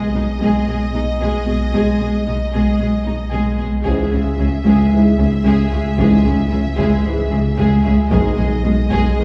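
A lush viola section carries the accompaniment in this brooding, vast hybrid orchestral and electronic film score at 113 BPM in C# minor, alongside a studio violin melody with smooth vibrato, an expressive soft-attack second violin line, a background cello section, a very quiet double bass section and a clean sine sub bass from the opening seconds, before dark, distant French horns, tight trombones in the background, a mellow tuba and a very quiet taiko ensemble struck with hard sticks arrive at 3.9 seconds, the recording heard through a wet scoring-stage reverb from further back in the room.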